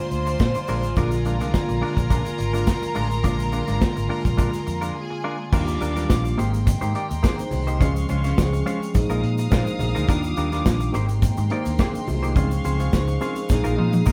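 Disco at 105 BPM in a danceable, celebratory mood, this cut from a longer piece opens with a biting, intense violin section over Bb7 until 5.5 seconds, then moves through Ebmaj9, Abmaj9, Dbmaj7 and Bb7sus4. Throughout, a reedy, gut-toned string section holds chords above a mellow tine electric piano, a clean hollow-body guitar, a round, amped fingered bass, a dark modern drum kit with a tight kick up front, very quiet congas and a grainy shaker in the background, all in moderate studio reverb, closing on a drum fill at 13.5 seconds.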